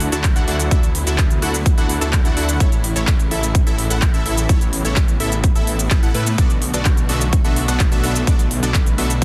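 An anthemic, euphoric slice of festival progressive house at 127 BPM in D major opens with a bright, detuned supersaw stab riff, a thick, menacing saw bass and lush bowed strings in the background, all pumping to the sidechain, with the stab trailing a delay over chords moving from Dadd9 to A and then Bm7. A layered big-room kit of handclaps, crisp hi-hats and shaker also plays from the start, its tape-warm sound re-recorded in a large room, and a punchy, up-front electronic kick joins at 0.2 seconds. The mix is dry, dense and heavily limited.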